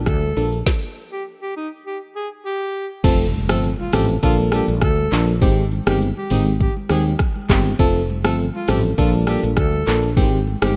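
Afrobeats at 101 BPM in Bb major with a breezy, sunny mood, built on a growly, round fretless electric bass and an up-front electronic drum kit with deep kick, woody snare and metallic hats, while a glassy, bell-like FM electric piano with chorus plays chords beneath a breathy, whispered alto saxophone melody, very quiet, warm congas add percussion, a stop falls from 0.7 to 3.0 seconds, and a background electronic impact sounds from 3.1 to 5.4 seconds in a rough home demo mix with light reverb.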